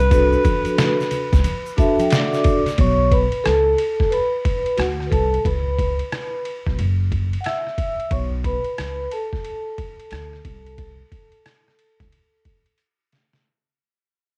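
Smoky, nocturnal jazz-hop with a swung groove, cut from a longer piece: a breathy alto saxophone opens with a brief, close-miked subtone phrase of scooped notes, while tube shaker and congas sit dry in the background through the opening seconds. Gritty, pitched-down sampler-style drums with a thumpy kick and cassette-tape grit share the front with a woody pizzicato upright bass. A mellow soft-mallet vibraphone with slow motor vibrato adds a fill and then takes a ringing solo over the fade-out from 2.8 seconds, before a drum fill at 12.8 seconds, all in a lightly reverberant home-cassette sound.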